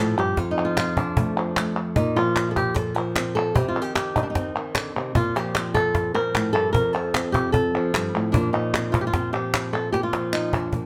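A proud, festive flamenco excerpt in Bb major at 151 BPM opens with an up-front, fingerpicked flamenco guitar carrying the melody from F2 to Bb4, joined at 0.2 seconds by a woody, close and dry cajon with faint snares and crisp, close palmas hand claps, moving through F, Bbsus2 and Cm chords in a moderate studio reverb before a drum fill at 9.9 seconds plays over a closing Bb.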